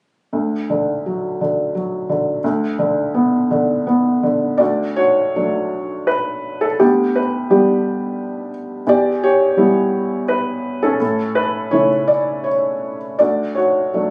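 Hopeful and relaxed, this classical solo piano passage moves in a lyrical 3/4 at roughly 78-90 BPM, its rubato pulse giving the phrases an easy, breathing quality. A felt-muted upright piano carries the whole piece, sounding soft, mellow and intimate, with a short sustain and a thin, vintage felt tone that sits up front. The harmony rests in D major, opening on D and Bm/D before a new section begins at 4.6 seconds and travels through G/D, Em and A on its way back to D. The piano spans from D2 up to D5, and it plays from 0.3 to 14.1 seconds. Light reverb and audible studio ambience surround the instrument, and the phone capture in the room leaves the top end dull and closed. As a fragment cut from a longer piece, it feels like a quiet, personal moment overheard at close range.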